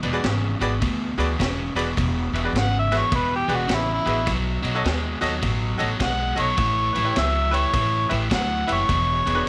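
This cut from a longer electric blues shuffle opens with a bright, worn concert grand piano comping, an overdriven electric guitar riffing low, a woody pizzicato upright bass up front and a vintage kit of tight kick, high-tuned snare and dark ride cymbal, all swinging at 104 BPM in E mixolydian through E9, B9 and A9 chords. At 2.6 seconds a gritty, amplified harmonica takes the lead up front, soloing with light vibrato, tongue slaps and scooped notes in a jazz-inflected style. The mood is soulful and rollicking, and the dry, close sound gives the saturated drums and overdriven guitar a rough immediacy.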